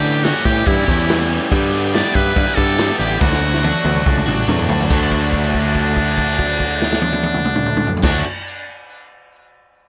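This dry indie rock excerpt moves at 142 BPM in D major, its mood wistful yet carefree. A muted trumpet sits up front with the melody, the metal mute lending it a buzzy, thin, brilliant tone, touched by light vibrato, scooped notes and a digital delay. Beneath it, two overdriven guitars play riffs: a raw, bright garage guitar, and a distorted electric guitar tucked into the background with subtle chorus. A picked electric bass adds a warm, direct low end, while a vintage acoustic kit, heard in a small room, brings a punchy kick, a medium-tuned snare, crash cymbal and toms with a rolled-off top, entering at 0.2 seconds. The chords pass from A7sus4 to G6 and settle on D, as a drum fill from 3.2 seconds leads into a held note that begins at 4.9 seconds.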